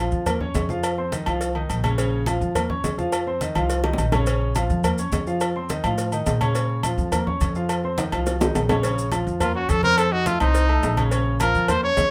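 A moderate studio reverb carries this fiery, passionate salsa excerpt at 210 BPM in Bb harmonic minor, where an up-front grand piano with audible action noise and long sustain and a woody, thumpy pizzicato upright bass on gut strings drive the Bbm and F chords. Behind them sit low-tuned congas struck with hard hands, round cowbell and bongos, ringing metal-shell agogo bells and timbales, and grainy, mellow maracas, with drum fills breaking the groove, the second at 8.0 seconds. At 9.4 seconds a clear trumpet with a smooth top steps forward for a pop-style solo.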